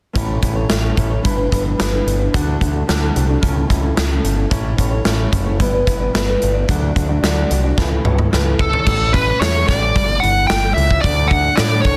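Quiet-loud alternative rock with an anthemic, bittersweet mood, this short section comes from a longer piece and moves at a steady, straight pulse. A fingerpicked steel-string acoustic guitar plays dark arpeggios with audible finger squeak, set against a growling, overdriven electric bass that sits punchy and up front. A big rock drum kit with a natural, big-room sound drives the music with a punchy kick, a medium-tuned snare, toms, hi-hat and bright crash cymbals. The chords cycle through A, G6, D and A/C#, and a drum fill from 7.8 seconds leads into a new section at 8.9 seconds that moves to Em13/G and D. A bluesy lead guitar enters at 8.6 seconds with a distorted, dark melody in a high register, treated with slapback echo and placed up front. The mix carries small room ambience and a dense, heavily limited modern master.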